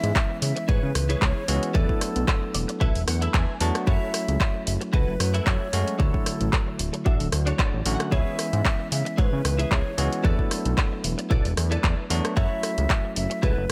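Nu-disco with a groovy, cosmic mood, built on a fat, detuned sawtooth analog bass and a punchy electronic kick sitting up front, with a house kit of handclaps, rim clicks and bright hi-hats in a small room. A bell-like tine electric piano pumps under sidechain compression while a direct-recorded clean electric guitar plays a picked, chorused riff, adding fills at 2.3 and 7.3 seconds. A breathy, hollow concert flute carries the melody through digital delay over chords moving from C#m7 through E7sus4 and F#m7 to Dmaj7, in a short cut from a longer piece.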